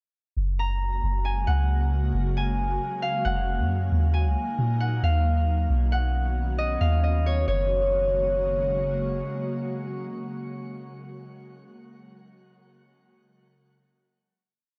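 Soft, round 808-style bass opens the piece at 0.4 seconds, laying down long, deep sub-bass notes with pitch slides under an atmospheric cloud-rap groove at 135 BPM in a half-time feel. A Celtic harp follows almost at once, playing a sparse, looping fingerpicked melody in a high register that repeats like a sampled loop, its ringing acoustic tone softened by a low-pass filter and trailed by tape echo. Behind them an ethereal, airy pad holds sustained chords through ensemble chorus and built-in reverb, its detuned, slow-blooming voice lingering until 11.5 seconds. The harmony moves from F#add9 through D#m and Badd9 before settling back on F#add9 for a final chord from 7.5 seconds, and once the bass and harp stop shortly after 9 seconds, the pad rings on alone. The mood is floating and dreamy, set in a small room with a dry, gritty hardware character.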